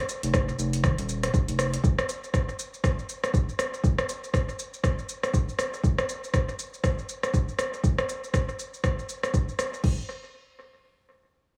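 Soaked in spring reverb and echo with a small-room ambience, this hypnotic, warm afro house fragment is cut from a longer piece. An overdriven, layered electronic kick thumps up front from 0.3 s, beside a swung afro-pop kit of metallic hi-hats, shaker, rim clicks, toms and crash cymbal trailing analog delay. A round, dark analog bass with a plucky filtered attack and sidechain pumping sits deep and up front only between 0.2 and 1.8 s.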